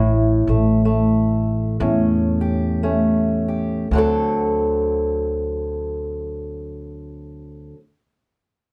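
A slow, swung 4/4 pulse at roughly 53-67 BPM, easing back through its first 3.9 seconds, sets the laid-back yet rollicking feel of this acoustic country blues in D mixolydian, cut from a longer piece. A fingerpicked old ladder-braced acoustic guitar carries the melody up front, its boxy tone and old strings giving it a dusky, aged character. Beneath it, an upright bass played pizzicato sits equally forward, its steel strings lending a bright, woody edge. The harmony rests on A7 before moving to D7 at 3.9 seconds, marking the shift into a second section. Both parts play from the start until just before 8 seconds, framed by light reverb in a dark, warm production.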